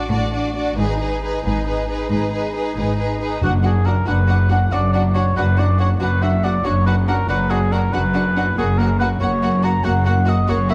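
In a straight 12/8 at 93 beats per minute, this triumphant, adventurous stretch of a heroic film score opens with a build-up of lush bowed strings, with violins carrying a smooth vibrato melody over a second violin line, expressive violas with portamento, and rich cellos and distant double basses in the bass, until at 3.4 seconds a mellow solo oboe joins with a second line and round, very quiet timpani sound briefly as the harmony moves from D/A and G#m toward Bm/F# and a closing F#, all set in a concert hall with moderate reverb and a dark, warm production.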